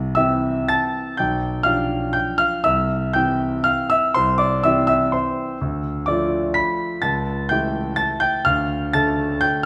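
Classical piano waltz in 3/4 and C major, elegant and graceful, moving with rubato between 113 and 132 BPM as a solo concert grand with a warm, natural tone and deep bass sits up front across its range from B1 to B6, tuned to A4 = 436 Hz, passing from C through G7/B back to C and then to Dm, A7/C# and Dm, all bathed in a wet recital hall reverb with a 1.6 s decay in this 9.7-second excerpt from a longer piece.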